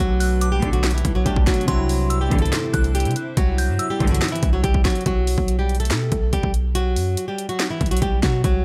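Wrapped in a digital ambience, this brooding, eerie trap excerpt moves at 142 BPM in half-time in B phrygian, with a boxy, fingerpicked flamenco guitar carrying the melody up front through digital delay, an overdriven trap kit of hard-clipped kick, sharp snare, bright hats and handclaps, and a deep, mellow 808-style bass sustaining long tones beneath, while glassy, detuned keys with chorus, a very quiet warbling lo-fi pad, dark bowed chamber strings playing vibrato stabs with delay, and a delicate, tinkling synth tine bell with chorus and delay add their layers before the strings stop at 4.3 seconds and the keys, pad and bell stop around 5.0 seconds, leaving the guitar, bass and drums over a B5 chord.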